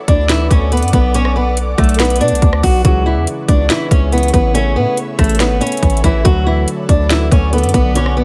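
An airy, ethereal pad opens this dark, menacing trap excerpt, its detuned, chorused chords hovering in the background with a slow attack and long release inside a built-in reverb. Almost at once a hard-clipped kick, sharp snare, metallic hats and rim clicks arrive up front in a half-time trap groove, alongside a punchy, heavy 808-style bass whose sine tone carries a noise layer, a fast attack and a decaying tail. Carrying the melody is a fingerpicked acoustic guitar with a warm, boxy, swing-inflected character, placed up front and trailed by tape echo. At 2.8 seconds a dark, mellow concert grand piano joins in the background, adding deep low end and long sustain beneath the harmony, which moves from D through Bm, C#m and Aadd9 before returning to D. The whole excerpt sits in a digital ambience that gives the cut a dark, shadowy atmosphere.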